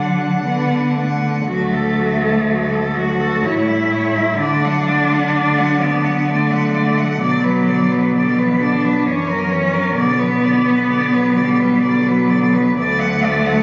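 Four bowed cellos begin together in this lyrical, warm classical excerpt in D major at 64 BPM in a rubato 3/4: a rich, focused melody with vibrato sings on top, a clear, even second line moves beneath it, a soft-attacked accompaniment with expressive portamento sits in the background, and an up-front bass with light vibrato anchors the harmony as it moves from D through A7, Bm and F#7 and back to D, all in a wet concert-hall reverb with a muffled, phone-recorded top end.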